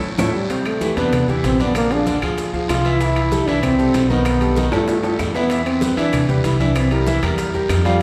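A mellow, punchy trombone sits up front with a smooth top, carrying the melody from 0.3 seconds in this sunny, danceable salsa excerpt cut from a longer piece. Beside it, a bright grand piano with a brilliant, open tone and short sustain plays the accompaniment through colorful chords such as Am11, Bb9 and Baug7, while a dark, thumpy pizzicato upright bass with gut strings supplies the low end. The percussion section fills out the groove: bright, thin-skinned congas and ringing metal-shell timbales in the background, tight high-tuned bongos played very quietly, woody claves, a raspy, distant guiro and grainy maracas. The band opens with an accent and a drum fill, and another fill arrives around 4.7 seconds. A resonant recital-hall reverb gives the whole ensemble the spacious sound of a church or concert hall.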